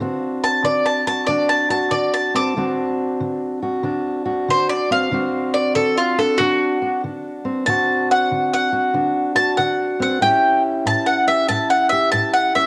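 Soulful and laid-back, this short excerpt of swung acoustic country blues features a woody, double-strung mandolin carrying the melody up front from 0.4 seconds over a dark, fingerpicked steel-string acoustic guitar with audible finger squeak, both heard through the character of a home cassette recording in a small room with light reverb, moving from D7 to A7 at 10.2 seconds.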